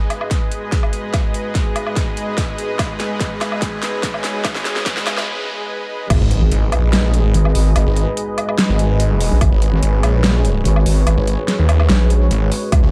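Heavy wobble dubstep in G# minor at 145 BPM with a half-time feel, this chaotic, aggressive excerpt opens on a lush supersaw pad pumping under a low-pass filter sweep, a warbly lo-fi tape-like pad, a very quiet riser and impact, a punchy up-front electronic kick, and a drum kit with a huge snare and metallic hats building through a drum fill and a break, until the drop at 6.1 seconds unleashes a saturated, chorused wobble bass and a snarling, growling distorted saw bass in a dark production with light reverb.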